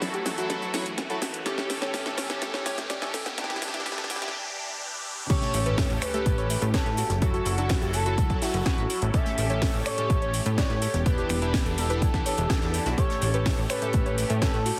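Hopeful and uplifting, this progressive house excerpt at 125 BPM in A mixolydian opens with a build-up where a background supersaw swell with phaser, a dark, round pluck arpeggio under a filter sweep, chorused retro polysynth stabs with dub echo, and a house kit of cracking snare, metallic hats, shaker, snaps and crash all pump under sidechain, joined by a riser with sub drop, over F#m7, A7 and Em7 chords. At 5.3 seconds the drop lands with an impact, bringing a punchy, tape-warm electronic kick up front, a faint gated 80s kit in a bright stone room, and a smooth, expressive lead that glides with portamento and vibrato through chorus and dub echo. From 5.5 seconds a funky, plucky analog bass sits up front, and the whole mix carries a heavily compressed, radio-like sheen with light reverb.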